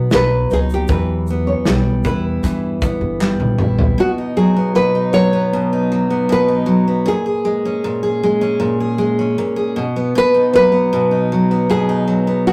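A full-bodied, fingerpicked nylon-string guitar carries the melody throughout this heartfelt, carefree acoustic pop excerpt in B major at 78 BPM, over an up-front picked steel-string dreadnought accompaniment, with a woody pizzicato upright bass, a loose small-room indie drum kit with a tight kick, crisp background handclaps, and a bright second nylon guitar adding brief arpeggios with audible finger squeak, before a drum fill at 3.2 seconds closes the opening and the bass and drums drop out by 4.0 seconds, leaving the two guitars in a rough, tube-saturated rehearsal-room sound with moderate reverb.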